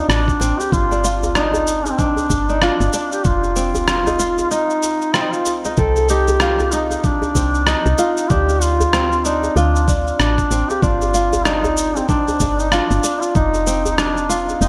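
This is a meditative, hypnotic organic downtempo groove at 95 BPM in 4/4 with a 60% swing on the sixteenths. It is cut from a longer piece and built on a cycle of Dm7, G5, F5 and Cmadd9. A compressed, gritty electronic kick with a thumpy, tape-warm weight anchors the beat from 0.3 to 13.5 seconds. It sits alongside a sampler-style rim click and shaker bathed in gated reverb, while a tight, cracking djembe struck with hard hands sits in the background. Beneath them, a woody, round FM bass with a fast attack and dark decay moves between F1 and D2, colored by tube saturation and sidechain pumping. A ringing, crisp kora plays fingerpicked arpeggios through a digital delay. Up front, a solo duduk carries the folk-style melody across a range of C4 to A4, its vibrato and scooped notes sounding distant and roomy through delay, all set in a lush hall reverb with a bright 1980s-style digital sheen.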